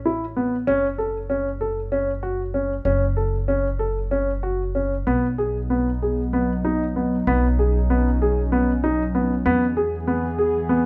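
Contemporary instrumental chamber music in 7/8 at 192 BPM (eighths), this short cut from a longer piece feels playful and shimmering, with a dark, mellow concert grand piano up front spinning arpeggios over a woody pizzicato upright bass. At 5.5 seconds a warbling, lo-fi pad with a detuned sawtooth edge, chorus and its own reverb enters with nostalgic sustained chords. Close, detailed microphones keep the piano and bass dry and intimate as the harmony moves from Gbm through Cb to E.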